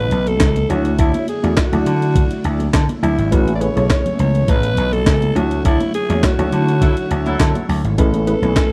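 A growling, raspy alto saxophone carries the melody over a faint, shimmering string machine and a punchy, amped slap bass in this smooth, danceable early-eighties boogie funk excerpt at 103 BPM, moving between Aadd9, Dmaj9 and Amaj9 chords. A gritty, compressed sampler-style drum kit with a thumpy kick, high-tuned snare, handclaps and hi-hat drives things up front, joined by very quiet bright congas and, from 0.7 s, a dark, detuned sawtooth polysynth comp with chorus. A tight, clear horn section adds a brief second line at 6.8 s during a band accent, all within a dry, close 1970s-style studio sound.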